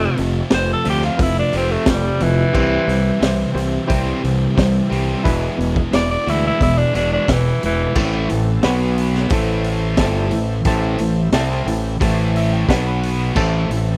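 Gritty and driving, this classic rock excerpt at 89 BPM in A minor opens with a raspy, up-front tenor saxophone solo carrying slapback echo until 8.0 seconds, over a distorted, double-tracked electric guitar riff, a dark fuzz guitar riff in the background, a growling overdriven fingered bass, a raw garage drum kit with a high-tuned snare and boomy kick, a barky reed electric piano with fast tremolo that plays a fill at 12.0 seconds, and a very quiet, bright tonewheel organ with key click holding sustained chords, all in a dry, close 1970s-style studio sound.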